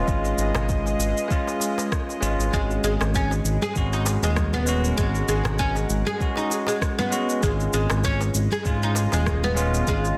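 A barky, bell-like tine electric piano with digital delay opens this earthy, hypnotic organic downtempo excerpt at 98 BPM in G# dorian, over a tense, string-like drone with 12-bit sampler grit in the background and an up-front, smooth gliding synth bass, these three pumping to the sidechain, while a soft electronic kick, electronic shaker, rim click and congas in studio reverb, and a crisp, dry metal-shelled darbuka set a lightly swung groove, before a woody, plectrum-plucked oud enters at 2.5 s with delayed arpeggios as the chords move between C#7 and G#m9.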